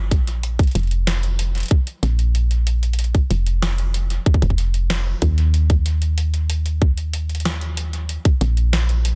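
IDM with a cerebral, intricate mood, this brief cut from a longer piece is built on a woody FM bass that sits up front, its soft, round, dark tone striking with a fast attack and decaying, running from F1 to Eb2. A tight, tape-warm electronic kick drum also sits forward until 8.4 seconds, while a booming analog drum machine supplies a crisp snare and metallic hi-hats treated with tape echo. The sound is dry, with a dense, heavily limited modern master.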